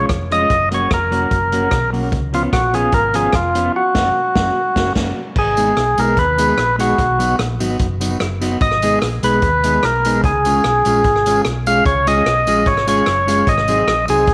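A lightly overdriven tonewheel organ carries the melody up front in this cheerful, upbeat ska excerpt at 148 BPM, its percussive third-harmonic attack and key click riding over a dark, clean electric guitar with slapback echo, a round hollow-body bass, and a vintage drum kit with dark cymbals, a punchy kick and rim clicks. The band hits a shared accent from 3.7 to 5.4 seconds before the second section turns toward G#m and B, where a jingly tambourine enters in the background at 5.6 seconds, also touched by slapback echo. The whole group sits in a moderate echo-chamber reverb with studio ambience, and the passage ends on a G#7 chord.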